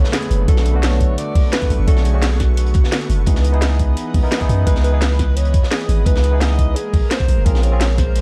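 A deep, long 808-style bass sits up front in this soulful, dreamy liquid drum and bass excerpt, its sine tone striking with a fast attack and then decaying beneath chords that move from Bm9 to C#m9 and on to A#m9. Above it, a mellow alto saxophone carries a jazz-style solo melody with vibrato and a smooth top, trailed by digital delay. A lush, thick unison pad of detuned sawtooth and square waves with a noise layer holds airy, bright chords in the background through a chorus effect, while a barky tine electric piano enters at 0.5 seconds, lightly overdriven through a combo amp and tape echo. The straight 4/4 groove at 172 BPM layers an electronic drum and bass kit, with a cracking snare and bright hats, over a gritty, saturated acoustic breakbeat kit with a medium-tuned snare and a rolled-off top, while a knocking electronic kick joins at 0.5 seconds. A very quiet downlifter sounds until 1.9 seconds, and the whole mix sits in a digital ambience with a dark production.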